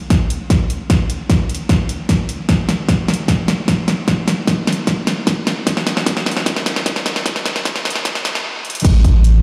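A half-time feel at 151 BPM in 4/4 drives this lush, playful future bass passage, cut from a longer piece. A punchy, layered electronic kick and a pop drum kit with a fat snare, warm hi-hats and crash cymbal spend nearly the whole passage on a drum fill that builds tension, while a filter sweep runs through the build-up. Underneath, a deep, thick saturated sub bass with a fast attack and long sustain sits up front, pumping through sidechain compression and ringing on until 9.4 s. The music stops dead at 8.4 s, then one more fill hit lands at 8.6 s before the bass tails off. The whole mix is bathed in a huge, washy ambient reverb that sounds like a big sound system playing in a bare room, giving the punchy drums a vast, echoing space around them.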